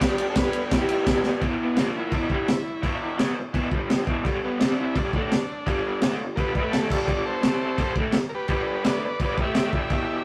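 A straight 4/4 drive at 170 BPM opens this swaggering, gritty garage rock excerpt. A crunchy breakbeat kit sits up front with a tight kick, a high-tuned snare and dark cymbals, its saturated, rolled-off tone recalling a small room, and a drum fill lands at 1.2 seconds. The raw garage guitar plays the riff throughout, electric and picked, double-tracked and lo-fi, its overdrive and tremolo giving it a rough edge. From 1.4 seconds the overdriven combo organ takes a solo over changes that move among G, E, C, A and A# power chords, its buzzy vintage voice carrying a light vibrato. A rough rehearsal-room recording with tube saturation and light reverb keeps the whole thing grimy and close.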